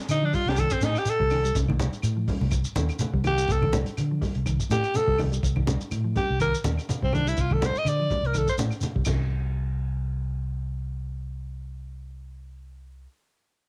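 Hypnotic and defiant, this afrobeat groove at 124 BPM swings its sixteenths lightly in a small, lightly reverberant room with a cassette home-recording character, moving between Cm and a rootless F7 over C. A raspy, gritty alto saxophone solos up front with light vibrato and forceful edge, over a crunchy, saturated breakbeat kit with a punchy kick, high-tuned snare and dark cymbals, while a round, amped fingered bass sits up front beneath a dark, clean electric guitar playing phaser-tinted arpeggios in the background. Woody claves and a grainy shekere fill out the percussion, low-tuned congas with hard hands join at 1.6 seconds, and after the other parts stop around 9.4 seconds the bass plays alone until 13.1 seconds.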